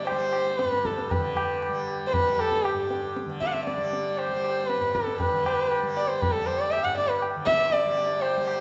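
Hindustani classical music in raga Bilaval on G, this short excerpt cut from a longer piece feels radiant and meditative at 118 BPM in a straight 4/4, with the pace speeding up across its 8.6 seconds. A dark, nasal, boxy sarangi carries the melody between G4 and F#5, sitting up front and close with light vibrato, a soft attack, an airy bow and gliding portamento, its sympathetic strings ringing beneath one intimate player. Under it a softly plucked tanpura holds a buzzing, shimmering drone from G2 to G3, lower in the mix. The low-tuned tabla joins at 0.1 seconds, its short-ringing strokes carrying a small-room character. A moderate recital hall reverb surrounds the performance, and the sound is capped in the upper treble.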